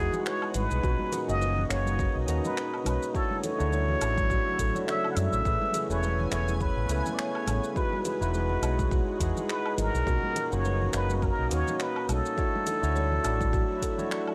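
A relaxed 104 BPM groove in 4/4 swings its sixteenths, with a deep house kit of finger snaps, metallic hi-hats, shaker and woodblock, soft-handed congas in the background, and a deep electronic kick that enters at 0.8 seconds and drops out at 14.1 seconds. In this smooth sunset chillout excerpt, a round, dark fingered electric bass sits up front beneath a clean tine electric piano moving through Emaj9, Bmaj9, Dmaj9 and Amaj9, while a shimmering, ethereal ambient pad with chorus and a buzzing, woody kalimba playing arpeggios through analog delay hover further back. Leading it all is a breathy, intimate plunger-muted trumpet with a wah-wah tone and tape echo, playing a jazz-style solo over a dry, gritty mix.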